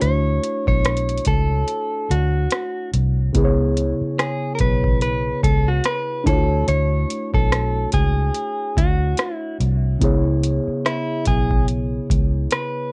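A booming analog drum machine, a round, foam-muted fingered bass, felt-like synth keys and a clean electric guitar all arrive together at the start of this sensual, longing contemporary R&B fragment, cut from a longer piece. It moves at a slow 72 BPM in 4/4 with a gentle 16th-note swing, sitting in C# phrygian and tuned slightly flat to A4 = 435 Hz, as the harmony sways between Dmaj7 and C#m7. Up front, the direct-recorded guitar carries the melody with a picked, compressed, clean tone taped to cassette. Beneath it, the muted synth keys blend triangle and sawtooth tones with a noise layer, a filter sweep, fast-attack decaying notes and chorus, giving an intimate, soft, shadowy bed. The dark, amped bass and the drum machine's deep kick, metallic hats and rim click are prominent, the drums roughened by overdrive, 12-bit sampler grit and tape. Light reverb and a homemade cassette sound tie the whole together, with the bass dropping out at 12.5 seconds, the drums at 12.7 seconds, and the guitar and keys ending at 12.9 seconds.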